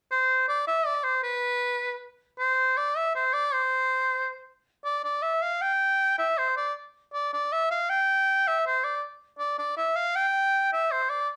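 A bright shawm plays alone from 0.1 to 11.3 s in this rustic, festive medieval fragment, moving at 158 BPM in a straight 3/4 in C major, tuned to A4 = 436 Hz, its up-front folk-style line spanning B4 to G5 with vibrato, soft attacks and scooped notes, carrying a slapback echo and light reverb in a dark production, and shifting into a new section at 4.5 s.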